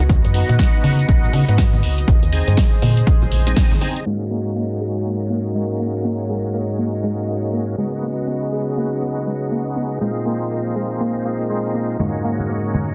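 Deep house with a late-night, moody swing, opening on a woody, round FM bass, an up-front punchy kick and gritty overdriven tonewheel organ stabs with chorus vibrato, slow rotary and delay, while a smooth, airy pad holds sustained sus chords in the background, the bass, organ and pad pumping to the sidechain. A tape-coloured analog drum machine keeps cabasa, hi-hat and snare going throughout, with bright congas sitting distant in a large room behind them. Around a band accent at 3.6 seconds the bass, kick and congas drop away, and from 4.1 seconds a detuned, ring-modulated analog pluck plays chorused, delayed arpeggios under a filter sweep, the congas returning at 12.0 seconds in this dense, heavily limited mix.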